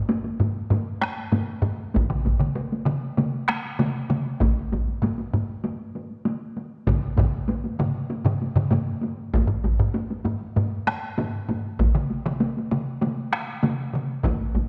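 Heard through worn, warbling cassette tape with a drifting pitch and the long bloom of a scoring-stage hall, this short excerpt of Japanese traditional taiko ensemble music has a driving, ceremonial mood in a straight 4/4. Two taiko ensemble parts struck with hard sticks open the passage at 0.1 s and 0.4 s, one in a small room and one close and dry, both up front. Two more hard-stick taiko ensembles, close and up front, join around 2.0 s and carry on with the others to the cut.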